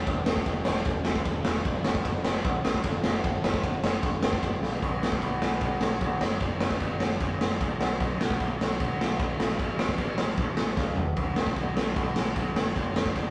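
A raw garage drum kit leads this rowdy, rebellious punk rock excerpt, its punchy kick, medium-tuned snare, crashes, ride and toms sitting up front with a dark, rolled-off top and the ring of a bright stone room, breaking into fills at 4.6 seconds and again from 10.8 to 11.2 seconds. Beneath it, a growling picked electric bass, overdriven, punchy and amped, pushes through low in the mix. The whole thing is captured as a rough rehearsal-room recording with light reverb, shifting into a new section at 4.8 seconds in straight four-four time.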